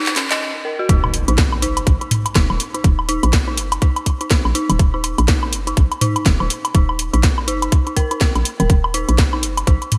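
A garage kit of cracking snare, hats and handclaps under gated reverb opens this hypnotic, clinical minimal techno clip, quickly joined by an eerie, inharmonic detuned synth bell riff with chorus and digital delay. At 0.9 seconds an up-front, tight electronic kick arrives along with a hollow, bouncy FM bass with tube saturation and sidechain pumping, followed by tape-flavoured electronic woodblock and toms and a background impact, all set in a bright 1980s-style digital production with light reverb.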